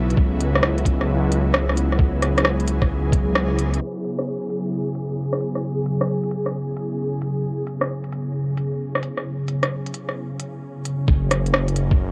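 Future garage with a nocturnal, melancholic mood and a swung 4/4 groove, cut from a longer piece and tinted by cassette tape and a low-pass filter. An ethereal, airy pad with ensemble chorus and built-in reverb holds sustained chords throughout, and a menacing, detuned saw bass with tube saturation swells beneath it, both pumping. An overdriven electronic kit supplies crisp hats and rim clicks while a muffled, thumpy kick joins the bass at the start. The kick and bass fall away by 3.8 seconds, sit out the filter sweep that follows, and return together at 11.1 seconds on the move to F#m7.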